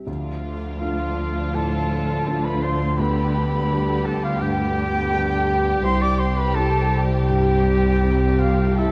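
Longing and moving, this rubato excerpt of a cinematic film score for orchestra drifts at 83 BPM in D dorian, as a felt-muted upright piano with audible action noise sits intimately in the background, joined from 0.1 seconds by veiled, con sordino violins carrying the melody over a very quiet second violin line, muted violas, and dark cellos and double basses, the basses up front, while a very quiet, mellow French horn section holds sustained chords through Dm, G/D and C. At 0.8 seconds a pure, bright flute, a distant, roomy clarinet and a vibrato-touched oboe enter with second lines. The dark production sits in a moderate scoring-stage reverb of 2.0 seconds.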